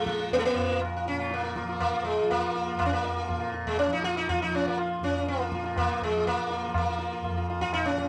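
This Hindustani classical piece is a short cut from a longer performance, solemn and introspective, in a straight four-beat metre. Up front, a bright, round sitar carries the melody from the very start, plucked with a plectrum, its buzz and sympathetic strings lending a glimmering halo, with a touch of plate reverb. Beneath it, a softly plucked tanpura sustains a warm, shimmering drone throughout. A high-tuned, ringing tabla enters at 0.1 seconds and sits lower in the balance. Captured at home on cassette, the sitar and tanpura carry a tape character, and a small, reverberant room surrounds the performance.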